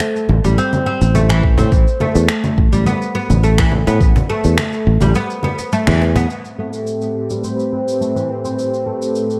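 A plectrum-plucked oud opens this meditative, earthy organic downtempo piece in A minor at 105 BPM, its woody double-string arpeggios sitting up front beside overdriven electronic finger snaps, shaker and congas re-recorded in a small room. A growly, punchy fretless electric bass with tube saturation and sidechain pumping joins almost at once, along with a close, dry cajon in the background, followed at 1.4 seconds by a deep, overdriven electronic kick, and the band hits an accent at 5.9 seconds before the bass and cajon stop at 6.3 seconds. From there a smooth, detuned sawtooth analog pad with chorus, tremolo and 12-bit sampler grit holds an Am9 chord while a filter sweep moves over the oud, the mix soaked in dreamy plate reverb.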